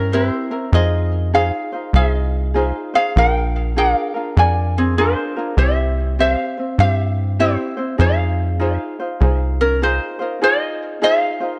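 Two acoustic ukuleles open together in this sunny, dreamy Hawaiian excerpt in F minor at 99 BPM with a swung 4/4 feel: one carries a bright, fingerpicked melody up front with tape echo, while the other plays a softer, warm thumb-plucked accompaniment. Beneath them, a punchy sawtooth-and-square sequencer bass with a filter pluck drives along until 10.0 seconds, all set in a small room with light reverb.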